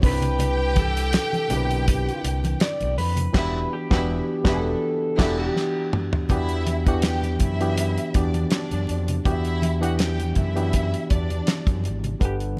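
A slightly broken-up, lo-fi electric guitar through a small old amp carries the melody with subtle chorus until 5.9 seconds in this romantic, lush 1970s-style soul passage at 81 BPM with a gentle sixteenth-note swing, over a dry, up-front drum kit with a fat snare and dark cymbals, an overdriven fingered electric bass, a reedy electric piano through its built-in speakers, very quiet damped congas and a distant, expressive bowed violin section, as the harmony moves from Cmaj9 to Em9 at 3.3 seconds under a band accent and a drum fill near 5.6 seconds, all set in light studio reverb.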